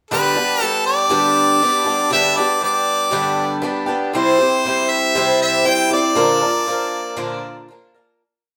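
A straight 4/4 pulse at 118 BPM drives this short, jangly rock piece, which has a hopeful mood and is tuned slightly flat to A4 = 439 Hz. A picked twelve-string acoustic guitar carries the accompaniment from 0.1 to 8.2 seconds in folk strumming with open chord shapes, its octave-doubled strings giving a shimmering, boxy tone, with finger squeak audible up front. A bright, close-miked harmonica sits just ahead of the guitar with a pop-style solo melody built from motif-based period phrases, lifted by a slapback echo. The whole piece is one verse moving from G to C at 4.1 seconds and to Bb at 6.2 seconds, where a fade-out begins. The band plays live together in a stone room whose reverb adds a wet, lively ambience around both instruments.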